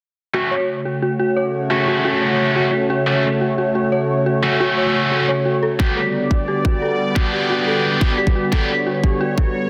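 A straight 4/4 pulse drives this dark, aggressive technical drum and bass passage, where an airy, detuned sawtooth pad holds sustained chords with chorus and sidechain pumping, an eerie, inharmonic FM synth bell spins arpeggios through a filter sweep with tremolo and delay, a bright, high-gain distorted guitar hits picked stabs up front, and a tight, layered electronic kick drum arrives at 5.8 s as the harmony moves from F#m to G, set in a moderate plate reverb within a dense, heavily limited modern master.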